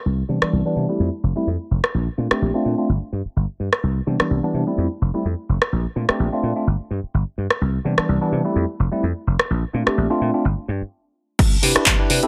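A growly, foam-muted thumbed slap bass drives this funky, joyful filtered disco house excerpt, its tube-saturated tone pumping against the sidechain under a low-pass filter, while a bell-like tine electric piano adds clean, phased chords that move through Cmaj7, Fmaj7 and Bbmaj9 with recurring breaks between them. A tape-warm analog drum machine sits up front with handclaps, rim clicks, and pumping hi-hats and crash cymbals, and a filter sweep runs across the whole section, with a stop arriving at 10.9 seconds. A punchy electronic kick enters only at 11.4 seconds as the progression returns to Cmaj7, all set in a light reverb.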